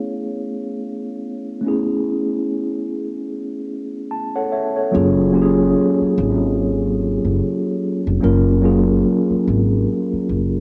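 Cosy and dreamy, this lo-fi hip hop excerpt drifts along at 73 BPM in 4/4 with a 16th-note swing, opening on a mellow, clean tine electric piano that sits up front with a cassette-tape character and plays a short fill from 3.7 to 4.9 seconds over an Amaj9 chord. At 4.9 seconds the harmony moves to F#maj9 and an up-front upright bass enters, plucked pizzicato with a woody, growly, thumpy tone on steel strings. A lush hall reverb and the home-cassette recording wrap the piece in a soft, intimate haze.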